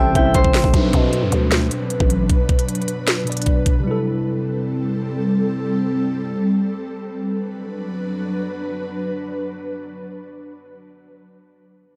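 Knocking kick, sharp snare and crisp hats from an up-front trap drum kit drive this menacing, melancholic half-time hip hop fragment, where a growling, buzzy 808-style bass and a bright, ringing fingerpicked Celtic harp with tape echo sound only in the opening 2.3 seconds, a clean tine electric piano through its built-in speakers carries the accompaniment, an electronic downlifter slides underneath, and an ethereal, airy detuned pad holds mellow chords until 10.8 seconds, all in a dry, gritty hardware recording.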